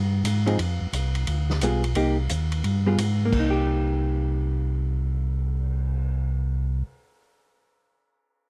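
Set in a light reverb, this smoky, late-night soul jazz organ trio, cut from a longer piece, swings on a round, lightly overdriven tonewheel organ bass line shimmering with chorus vibrato and a slow rotary speaker, beneath a clean, compressed hollow-body electric guitar picking an accompaniment up front and a tight-booth acoustic drum kit of kick, medium-tuned snare, hi-hat, ride, crash and cymbal swells with a rolled-off top, the guitar lingering alone until 7.7 seconds.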